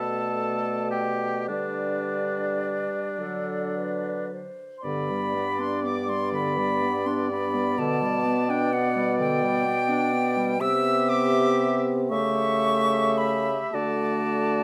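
Classical slow romantic movement for wind quintet in 6/8 with rubato, serene and lyrical, cut from a longer piece. An airy metal flute with vibrato and a soft attack carries the melody at the front, an oboe with light vibrato sings a second line, and French horn and a distant, roomy clarinet supply the accompaniment over a warm bassoon bass with light vibrato and a gentle onset that also sits forward. A second section begins at 4.8 s, and a moderate recital hall reverb lends the quintet space.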